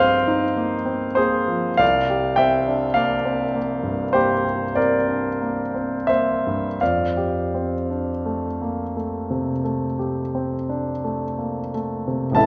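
A clear concert grand piano opens this short, serene passage of impressionist solo piano in F major, drifting with rubato at a slow 41-53 BPM in 4/4. The hazy harmony moves from Ab69/G to C9sus4 at 1.8 seconds and settles on F69 at 6.8 seconds, with the instrument's deep bass and long sustain reaching from A1 to A5. Placed up front and intimate, the polished piano carries audible action noise, while a wet recital hall reverb surrounds it.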